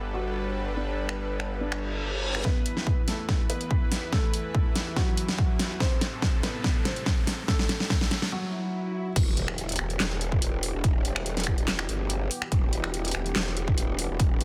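A half-time 4/4 pulse at 143 BPM drives this menacing, chaotic heavy wobble dubstep excerpt in E minor, where a soft, felt-muted upright piano carries the melody with vintage 12-bit sampler grit and digital delay until 9.1 seconds, over a lush, detuned supersaw pad that pumps with sidechain and sits behind a low-pass filter throughout. A dubstep drum kit with a huge, soft-clipped snare, metallic hats, finger snaps, handclaps and crash comes in at 1.1 seconds, a punchy, tape-warm electronic kick follows at 2.4 seconds, and background reverse cymbal, riser, swell and impact effects mark a build-up and a brief break. At 9.2 seconds the drop hits on Emadd9 as the aggressive, saturated growl bass returns up front, wobbling through a formant filter with chorus and overdrive, all under light reverb and a dense, heavily limited modern master.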